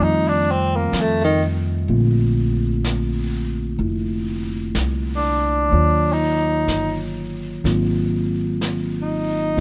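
Late-night and intimate, this slow 62 BPM swung jazz ballad features a mellow tenor saxophone soloing up front with subtone and scooped notes, over clean tine electric piano chords moving through F9, Bbmaj9, Ebm7 and Ab13, a woody, thumpy pizzicato upright bass on gut strings, and a brushed drum kit entering at 0.9 s, in a dry, close and detailed recording.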